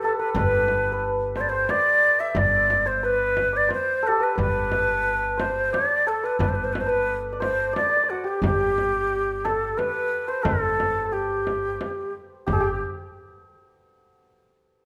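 A breathy, reedy ney sits up front with a tongued, vibrato-laden melody in this festive Persian modal ensemble piece in 3/4, cut from a longer work. Beneath it, a shimmering, ringing hammered santur carries a second line, joined almost at once by a woody, thumpy pizzicato upright bass holding a low G and a deep frame drum played close with soft hands. The whole ensemble sits in a moderate recital-hall reverb.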